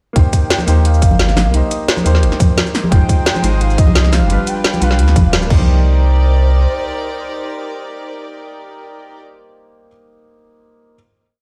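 A rolling two-step beat at 174 BPM drives this dreamy liquid drum and bass piece in C minor, with a tight, up-front electronic kick, woody snare, metallic hats, cabasa and crash joined by soft, bright congas in the background through a drop from 0.2 to 5.7 seconds, where a band accent lands at 5.3 seconds. Beneath it a deep, round sine sub bass carries a dub-style line, while a grand piano holds drop2-voiced chords with syncopated pushes over Cm7, Fm7 and G7, and a velvety sawtooth lead sings mellow hook phrases with chorus, vibrato and dub echo. From 2.9 seconds an earthy chamber string section adds a bowed, pumping pad, carrying into a final hit as the piano rings on to 11.0 seconds in a stone room on a big sound system.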